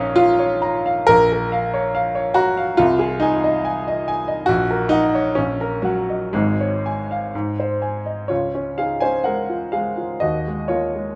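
A clear baby grand piano carries this brief romantic character piece alone, its natural, up-front tone heard from 0.0 to 11.2 seconds across a range from Ab1 to Bb5. The mood is hopeful and passionate, moving in 2/4 with a flexible rubato feel at roughly 59 to 71 BPM in Db major. The harmony opens on Bb minor and settles through a chain of chords onto Db major at 8.3 seconds, where a second section begins before closing on an Ab seventh shape over Eb. Notes have a short sustain, set inside a moderate recital hall reverb that gives the piano a sense of space while keeping it present. Cut from a longer work, this passage feels like a fragment of an unfolding romantic statement.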